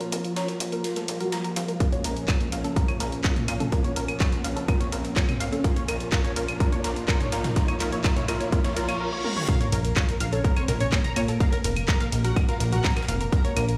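Dramatic and cinematic, this melodic techno piece at 125 BPM in Bb minor builds for 9.5 seconds under filter sweeps on a thick, detuned unison lead and a tight, driving sequenced arpeggio, with a smooth, warbling pad, a plucky, wave-folded analog bass, punchy analog drum-machine claves, claps, hi-hat and toms, a very quiet gritty breakbeat ride and snare, an overdriven kick up front, and a background riser and reverse cymbal, before a drum fill and impact launch the drop at 9.5 seconds where an earthy, distant chamber violin section joins, with the melodic parts pumping under sidechain in a large, reverberant room.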